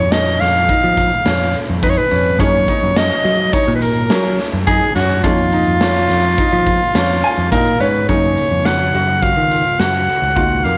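Steeped in a moderate echo-chamber reverb, this bright, intricate progressive instrumental excerpt in 5/4 at 106 BPM and F# major puts a raspy, gritty soprano saxophone up front on the melody, with a very quiet, breathy flugelhorn with vibrato on a second line, a dark, clean hollow-body jazz guitar comping in the background and adding a fill at 7.0 s, a direct picked electric bass, clear grand piano arpeggios with audible action noise, a saturated garage drum kit with a punchy kick in a pumping stone room, and a grainy tube shaker that stops at 7.9 s.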